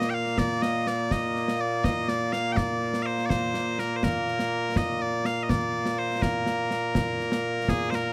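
This is Scottish traditional pipe music, a short ceremonial and proud passage in 6/8 at 82 beats per minute counted in dotted quarters, set in B-flat major. Loud bagpipes carry the melody as the lead voice from the start, their tone bright, piercing and continuous, placed up front in the mix. Beneath them, a concert snare drum and concert bass drum play throughout, captured acoustically and close, with dark cymbal colour in the kit. The room sound is dry, with little reverb, which keeps the pipes sharp and direct. The passage runs about 8 seconds and is cut from a longer piece, ending as the drums stop at 8.0 seconds and the pipes just after at 8.1 seconds.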